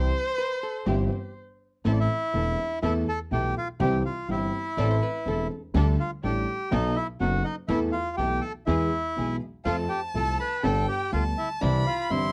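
A rubato 4/4 pulse at 123 BPM drives this dramatic, tense tango excerpt in A minor: a bowed violin solo with vibrato and portamento opens over a dark grand piano with audible action noise, a woody pizzicato upright bass, soft-attack stabs from a rich studio string section in the background and brief clean phrases on a hollow-body jazz guitar, before a reedy, up-front bandoneon takes the melody at 1.9 seconds and the violin returns as a second line at 9.7 seconds, captured in a dry, close 1970s-style studio sound.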